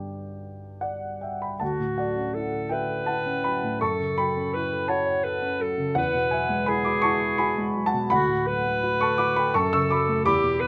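A dark, worn baby grand piano opens alone, its mellow chords ringing with long sustain as the harmony settles from Gmaj7 toward Dmaj9. At 1.6 seconds a clarinet enters with a soft attack and a clear, roomy tone, carrying a gentle melody in a narrow middle register while the piano continues as accompaniment. This impressionist classical duo moves in an unhurried triple metre with a flexible, rubato feel. Its harmony drifts through F#m7, Eadd9 and D6 before resting on F#m as the excerpt breaks off at 10.7 seconds. Light reverb lends the pastoral, luminous mood a soft glow, with both instruments placed up front.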